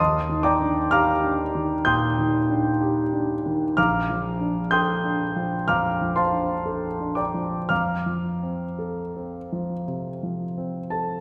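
A concert grand sits close and intimate in a generous, reverberant hall, its deep bass and audible action noise giving the natural tone a tactile presence. This short excerpt of impressionist solo piano has a serene, luminous mood and a free, rubato feel in 4/4, with the piano reaching from a low Bb1 up to G6. The harmony drifts from Ebmaj7 to Bbmaj7 at 3.8 seconds and settles on F at 7.7 seconds.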